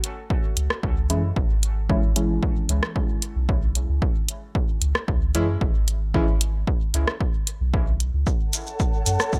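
A deep house drum kit of hi-hat, rim click and shaker opens this meditative dub techno piece at 113 BPM in C# minor, soon joined by a punchy, up-front electronic kick and a round, soft sub bass with sidechain pumping. A mellow chord stab treated with chorus, phaser, pumping and dub echo sounds from 1.1 to 6.3 seconds over C#m. As the harmony moves to F#m, a blurred granular cloud pad and a breathy, wind-like noise texture arrive at 8.6 seconds, each carrying its own reverb and sidechain pumping.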